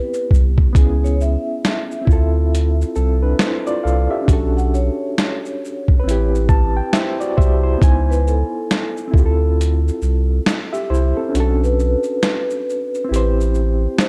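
Lo-fi hip hop at 68 BPM with a swung, hazy and reflective mood, cut from a longer piece: a gritty, compressed boom bap sampler-style kit with a thumpy kick and medium-tuned snare, re-recorded in a large room, opens on a drum fill before the round, deep dub sub bass enters at 0.3 s, while an up-front reedy, lightly overdriven electric piano with medium tremolo and cassette-tape character accompanies over minor-ninth and minor-seventh chords and takes a fill at 6.0 s, a mellow soft-mallet vibraphone carries the melody through tape echo, and the kick drops out from 11.3 s in a dark production with light reverb.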